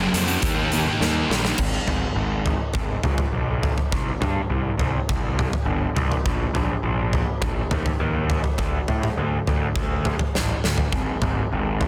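Quiet-loud alternative rock at 103 BPM in a straight 4/4, this brooding, cathartic passage is cut from a longer piece. A double-tracked fuzz guitar opens with a warm, distorted riff over an Eb chord, then stops at 1.6 seconds, marked by a drum fill. From there, the growly, overdriven picked bass carries the music through Abm, C5, Bbsus4 and D5 before the harmony drops out. The huge arena kit sits up front, with a punchy kick, medium-tuned snare, bright cymbals and toms in a pumping hall sound, and it adds another fill at 10.6 seconds. Small room ambience surrounds the parts, and the dense, heavily limited modern master keeps the sound forceful throughout.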